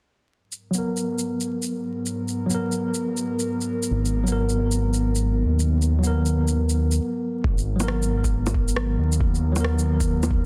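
Swung shaker, bongos and rim click, electronic and overdriven, drive this ghostly, nocturnal future garage piece at 136 BPM in G# minor, as a warbling, nostalgic pad with chorus, phaser and sidechain pumping fades in on a G#m9 chord beneath a worn, slightly out-of-tune tine electric piano sent through dub echo and a filter sweep; a dark, detuned saw bass rumbles in at 3.9 seconds, and after a brief break a muffled, thumpy kick lands up front at 7.4 seconds, the whole set in vinyl crackle and a dense, heavily limited master.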